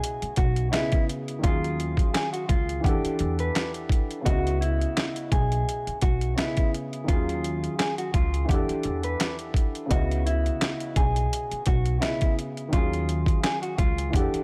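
A dark grand piano, a clean, fingered electric guitar and a compressed, sampler-style drum kit open this gritty, reflective boom-bap hip-hop excerpt together, with a pizzicato upright bass joining at 0.2 seconds. The drums sit up front and carry a pitched-down grit, pairing a thumpy kick and a medium-tuned snare with hi-hat and handclaps over lightly swung sixteenths. The woody, steel-strung bass holds the low end, while the worn, intimate piano accompanies with its action noise clearly audible. Filtered and touched with delay, the mellow guitar carries the melody in a narrow range. Minor eleventh chords on C#, D# and E circle beneath it all in a small room ambience, and the recording is cut from a longer piece at 14.4 seconds.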